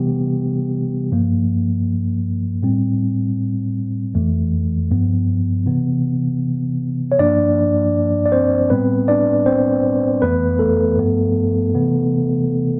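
A mellow tine electric piano plays alone from 0.0 to 12.8 s in this dreamy, nostalgic hip hop excerpt at 79 BPM with a gentle 16th-note swing in C major, its clean, up-front tone colored by cassette tape and a low-pass filter as it moves through jazzy chords from Cmaj7 and Gm7 to Am11, Fmaj7#11 and G9 within a modest small-room reverb and a dark overall production.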